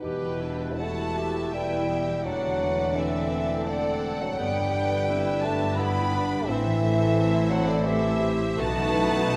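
This 9.4-second cut from a longer work opens with a full symphony orchestra in a slow, romantic movement in E minor. It moves in a rubato 3/4 at roughly 75-88 BPM, with a yearning, melancholic mood. A close, bowed violin section carries the melody with smooth vibrato, and a very quiet, airy flute ensemble plays a second line in the same range. A more distant violin section and a soft-attacked clarinet in the background add further second lines. The mellow solo bassoon sits forward in the mix, joining a lush viola section in the accompaniment, while tight French horn and trombone sections, both very quiet, hold sustained chords. A ringing, fingerpicked concert harp plays arpeggios in the background, and chamber cello and double bass sections anchor the bass, the basses with a focused tone. The harmony passes from Em through D/E, G and Am before arriving on B at 8.6 seconds, and a generous scoring-stage reverb gives the ensemble a spacious setting.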